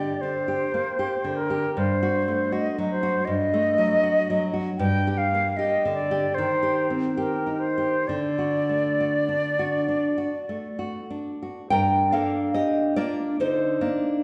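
Melancholic and elegiac, this rubato romantic duo in G minor moves between 63 and 80 BPM, with a close-miked concert flute carrying the melody in an airy, expressive voice with soft attacks and vibrato until 10.8 seconds, while a fingerpicked nylon-string guitar with bright, fresh strings plays the classical accompaniment until 14.2 seconds, both parts up front within a wet recital-hall reverb heard from further back in the room.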